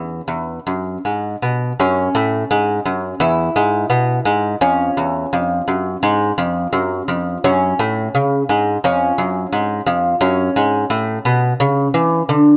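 Loosely timed in a rubato 4/4, this radiant, dance-like baroque-style classical piece, cut from a longer work, features a solo lute fingerpicked on gut double strings, some doubled at the octave, whose bright, delicate tone sits up front under close, detailed microphones and a moderate spring reverb as the harmony moves from F#m through E and C# before returning home.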